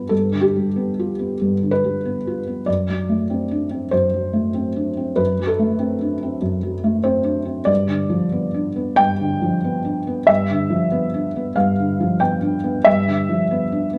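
Wistful and intimate, this short excerpt of neoclassical minimalist piano moves at 94 BPM in 4/4 with a loose, rubato feel. A single felt-muted upright piano plays alone from 0.0 to 14.0 seconds, ranging from F#2 up to G5. Its tone is soft and dark, with thick felt dulling the hammers, a short sustain, and audible action noise that keeps the instrument close and up front. The harmony rests on G7, shifts to D7/F# at 2.7 seconds, and returns to G7 at 7.7 seconds. A moderate large-studio reverb with a 1.2-second decay gives the hushed playing a gentle sense of space, as if captured live in one room.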